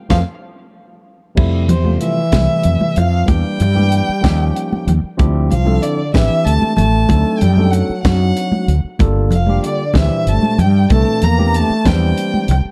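Soaring and funky, this short cut from a longer electric jazz fusion piece moves in 6/8 with a straight feel. It opens on a band accent, with a drum fill and an overdriven tine electric piano fill running from 0.4 to 1.4 seconds before the full groove settles in. A rich, focused violin carries the melody with vibrato, bowed by one player and set at a distance, while a mellow trombone plays a second line with light vibrato, scooped notes and a smooth top. The barky, gritty electric piano, heard through a combo amp, supplies the accompaniment over lush extended harmony, and a round, dark fretless bass sits up front. A tight funk drum kit with a high-tuned snare and a snug kick drives the groove alongside damped, high-tuned congas played with soft hands in the background, all in a dry, dark production.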